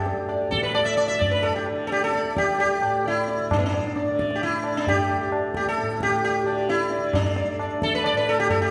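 Devotional and radiant, this brief Hindustani classical fragment at 132 BPM in 4/4 sets an up-front, round sitar melody, buzzing and shimmering with sympathetic strings, over a softly plucked, low tanpura drone, while a low-tuned, ringing tabla sits close and dry from 0.1 seconds; the ensemble is heard from further back in a reverberant recital hall, and the music moves into a new section at 3.5 seconds.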